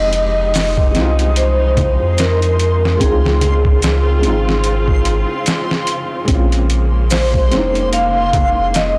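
A deep, round sub bass with tube saturation sits up front from the start, and a pitched-down boom bap kit with a thumpy kick and gritty medium-tuned snare enters at 0.1 s to set a lightly swung, smoky trip hop groove, with acoustic maracas and congas tucked in the background from 0.5 s. From the outset a metallic vibraphone with fast motor vibrato and tape echo carries the melody over a muted, thick-felt upright piano with tremolo and audible action noise, while a distant bowed string section holds expressive sustained chords with vibrato and portamento. From 0.8 s a reversed, dreamy granular texture swells behind, and the whole cinematic recording sounds blown-out and overdriven with light reverb, cut from a longer piece.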